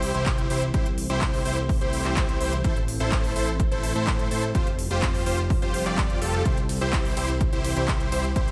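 A layered big-room dance kit of handclaps, crisp hi-hats and ride cymbal, which sounds re-recorded in a small room, sets a straight 4/4 pulse at 126 BPM from the start, and a punchy, tape-warm electronic kick joins it at 0.3 s. This triumphant, euphoric festival progressive house excerpt in C major opens on an impact, with a very quiet electronic sub drop at 0.2 s. A huge, bright detuned supersaw riff carries the chords through C, Am, Fsus2 and back to C, with sidechain pumping and dub echo. Beneath it, a fat, nasal, saturated analog bass with a filter pluck pumps in time. In the background, a mellow sawtooth unison lead plays arpeggios with vibrato and dub echo, while a lush, warbling vintage pad sustains slow-attack chords with chorus. Light reverb ties the mix together.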